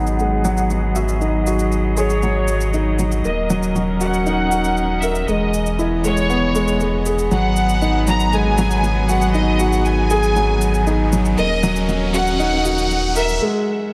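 A light studio reverb frames this melancholic, hypnotic piano-and-strings electronica excerpt in G# minor at 118 BPM, where a dark, mellow grand piano riff with short sustain and delay sits up front beside a round, deep analog bass, and a faint overdriven shaker ticks beneath. A biting, bright violin section carries the melody through a low-pass filter sweep as a clear chamber string quartet holds smooth, bowed chords, all over a G#m7, D#m7 and Emaj7 progression that builds throughout. An electronic riser enters in the background at 10.4 seconds, and the music breaks off at 13.4 seconds, leaving only the piano to ring out until 13.9 seconds.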